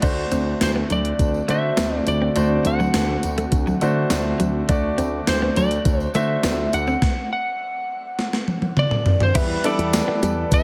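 An up-front, gated 1980s digital drum machine drives this nostalgic, urgent pop excerpt, its thumpy kick, gated-reverb snare and tape-tinged sampler sound leading into a fill at 8.2 seconds before the harmony shifts from D7 to Em at 9.4 seconds. A punchy slap bass with an envelope filter, a clear grand piano bathed in shimmer reverb, and a very quiet clean, compressed electric guitar riff sit over a brassy, evolving analog pad with chorus and vibrato, while a jingly tambourine adds faint live-room sparkle. From 0.6 seconds a dark, slightly broken-up lead guitar carries the melody through delay and shimmer reverb.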